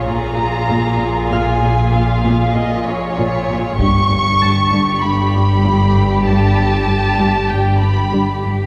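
This cinematic suspense score fragment, cut from a longer piece, carries an uneasy, tense mood in a straight 4/4 pulse. Muted violins with con sordino and vibrato sing the up-front melody with a veiled, smooth top, while a more distant muted violin line moves beneath them. Muted cellos and double basses hold the low end, with a second cello part playing a riff in the background, their bowed tone dark and shadowy. A concert harp rings softly behind the strings, and a taiko ensemble struck with heavy sticks enters briefly at 3.8 seconds, as the harmony moves from Bbm7 to G. A church reverb with a long 3.2-second tail wraps the ensemble in a cavernous hall sound.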